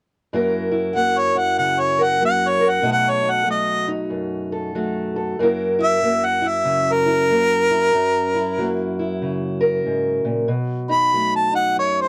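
A swung 4/4 feel carries this soulful, gritty acoustic country blues fragment, cut from a longer piece. A fingerpicked steel-string parlour guitar, dark and boxy, sets up the accompaniment at 0.3 seconds, and a clear, close-miked harmonica joins up front at 1.0 seconds with a jazz-inflected solo line of soft attacks, light vibrato and scooped notes. Light reverb and the warbling pitch drift of worn old cassette tape give the recording a weathered, lo-fi character.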